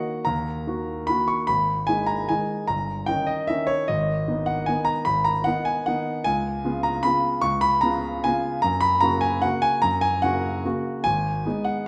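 Bittersweet and elegant, this brief classical piano waltz excerpt moves in 3/4 at 150 BPM with uneven beats and a rubato feel, the smooth, vintage-toned grand piano sitting up front as the sole voice across a range from G1 to Db6, tuned to A4 = 438 Hz and framed by moderate recital hall reverb, as its harmony drifts from Ebm through Abm, Eb7/G, Db7 and Gb before settling back on Abm near 11.0 seconds.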